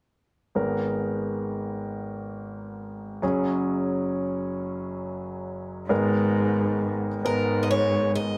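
Close, up-front studio sound with moderate reverb frames this melancholic, intimate acoustic folk-pop ballad in a slow 6/8 at 45 BPM, where a clear concert grand piano with audible action noise, deep bass and long sustain accompanies over Abmadd9 and Gbsus2 from 0.6 s, an expressive bowed cello with vibrato, portamento and a soft attack enters as the bass at 5.9 s, and a bright picked steel-string acoustic guitar takes the melody from 7.3 s until the passage is cut off.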